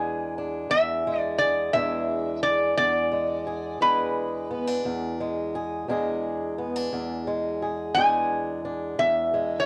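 Acoustic country blues for two guitars, swaggering and laid-back, moving at a slow 58 BPM in a straight 12/8 in E mixolydian. A metal-body resonator slide guitar carries the melody from B4 to G#5, its tone bright, metallic and nasal, played with fingerpicks and sitting up front. Beneath it, a fingerpicked swing-style acoustic guitar with fresh strings supplies a boxy, warm accompaniment spanning E2 to G#4, also placed up front but mixed lower than the slide. The harmony rests on a single E7 chord throughout this 9.7-second excerpt, cut from a longer piece. Light reverb and the cassette-tape character of a home recording give the duo an intimate, homespun sound.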